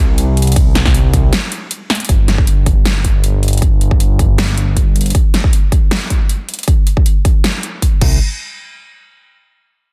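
Bittersweet and lush, this short future bass fragment moves with a half-time feel and a light swing on the sixteenths. It opens straight into a drop with a fat analog bass, a nasal, detuned blend of sawtooth and square wave that is saturated, with a filter pluck, a fast attack, sustained notes and sidechain pumping. The big-room dance kit comes in almost at once, layered and produced, with a huge snare, metallic hats, crash and ride. A punchy electronic kick arrives at 0.6 seconds and sits up front with the bass, while a break at 1.3 seconds carries the drop toward a new section at 2.1 seconds. The bass drops out at 5.1 seconds and briefly returns near the end, all inside a dry, dense and heavily limited modern mix.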